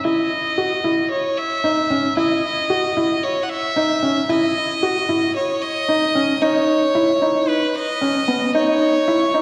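A felt-muted upright piano and a bright violin sound together from the opening moment of this short electronica excerpt, which is cut from a longer piece and moves at 113 BPM in a straight 4/4. The piano carries a riff in its middle register, its tone soft and intimate, sitting up front in the mix. Above it, a single bowed violin plays the melody with light vibrato and an airy, nasal, earthy character, its brightness tempered by a low-pass filter. The whole passage, lasting about 9.4 seconds, works as a build-up, and the mood is moving and melancholic. A wet concert hall reverb with a long tail surrounds the players, and the dark, warm production, shaped by a high-pass filter, gives the recording a spacious atmosphere.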